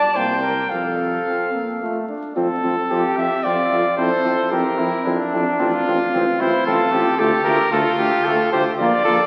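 Grave and heroic, this classical brass quintet fragment in a rubato triple metre features a warm cornet carrying the melody up front, a dark trumpet with light vibrato on the second line, a present French horn and a close-miked trombone supporting in the background, and a mellow tuba with light vibrato on the bass, all set in a reverberant concert hall and heard through the crackle of a very old 78 rpm record.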